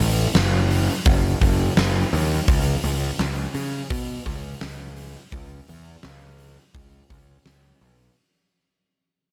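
Rock in a shoegaze and dream pop vein, this short excerpt cut from a longer piece has a wistful, dreamy mood at a straight 84 BPM in 4/4. A dark, round fuzz bass, picked and overdriven, plays from F#1 to C#3 and sits up front for the whole 8 seconds. A huge arena drum kit of hi-hat, kick drum and snare matches it in level, with a fat snare, a punchy kick and a pumping room sound. The overall mix carries little reverb. The passage is a fade-out from its first moment to its end at 8.2 seconds.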